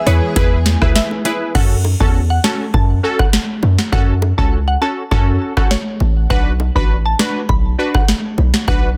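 Dense, heavily limited and modern, this bouncy, hypnotic dancehall excerpt sits in a digital ambience at 101 BPM in a straight 4/4, in F# minor. A booming analog drum machine with a deep kick, crisp snare, metallic hats and crash, re-recorded in a large room, drives the groove up front beside a hard-hitting 808-style bass, punchy and heavy with a sine core and a noise layer. A glassy wavetable pluck carries the crystalline, nasal melody between B4 and B5 through chorus and delay, while a brassy synth stab, detuned sawtooth with a filter sweep and chorus, fills in the accompaniment. Tight, high-tuned bongos tick along close and dry in the background. A dark, bowed studio string section holds smooth chords over an E chord until 1.5 seconds, pumping against a sidechain; then the hi-hats drop out at 1.6 seconds as the harmony settles on F# minor before moving to B minor at 6.3 seconds.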